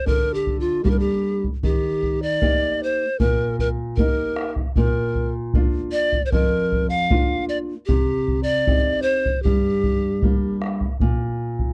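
A straight 4/4 pulse at 77 BPM carries this melancholic, wistful piece of Andean folk in G minor, with a deep bombo sounding as if from a large, distant room while a small, dark, fingerpicked nylon-string guitar moves through Gm, Eb, Bb and Cm before returning to Gm. Up front, a breathy, bright pan flute with a woody tone, soft attack and gentle vibrato sings the melody until 10.6 seconds, after which guitar and drum carry on to 11.7 seconds. The dry, close, 1970s-style studio sound keeps this short cut from a longer piece intimate and polished.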